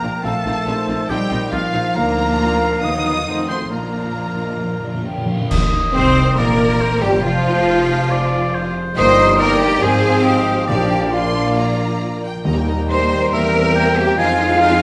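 Drenched in a wet scoring-stage reverb, this fast, graceful and spirited romantic orchestral excerpt sets an intense, distant violin melody over focused second violins, an airy flute section, a roomy solo oboe, smooth violas, mellow French horn chords, a ringing thumb-plucked harp, and a bass line from the cello and double bass sections, while bright cymbals with concert bass drum arrive at 2.0 s and calf-headed timpani play from 3.7 s and again from 10.7 s.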